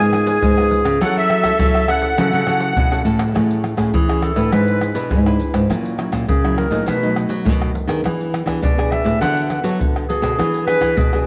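Bathed in a wet echo-chamber reverb, this festive, joyful samba-choro excerpt opens with a reedy, shimmering musette accordion carrying the melody up front until 3.0 s over a clear, close-miked clarinet second line that takes a classical-style solo from 3.4 s, while a full-bodied fingerpicked nylon-string guitar with audible finger squeak plays the accompaniment, a second classical nylon-string guitar fingerpicks the bass, and maracas, pandeiro, tamborim and a tight surdo drive the close, up-front percussion.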